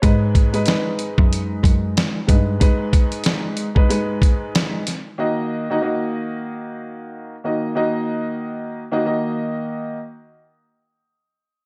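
A gritty, sampler-style soul drum kit sits up front in this moody, reflective boom-bap hip-hop fragment, its thumpy kick, fat snare and hi-hat carrying a compressed, roomy punch with a swung sixteenth-note feel until it drops out at 5.0 seconds. A woody, slightly detuned upright piano plays accompaniment throughout, its vintage, smooth tone filtered and colored by cassette tape so it feels like a worn record pulled close to the ear. Underneath, a single bowed cello takes the bass role for only the opening 2.6 seconds, its nasal, earthy sound touched with light vibrato and an airy bow. The harmony moves from Abm to Ebm at 5.2 seconds, leaving the piano alone to carry the brooding mood. A light reverb and small room ambience wrap the parts in an intimate, dusty space, and the clip is cut from a longer piece.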